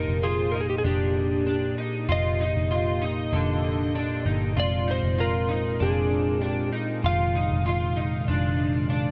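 Melancholic and hazy, this short dream pop cut at 97 BPM sets a compressed, slightly broken-up slide guitar melody with digital delay over chorused arpeggios from a dark guitar at the edge of break-up, flute-like tonewheel organ chords turning through a slow rotary speaker, and a round, foam-muted picked bass, all bathed in a huge ambient reverb as the harmony moves from Ebmaj7/F to Fm7 at 4.6 seconds.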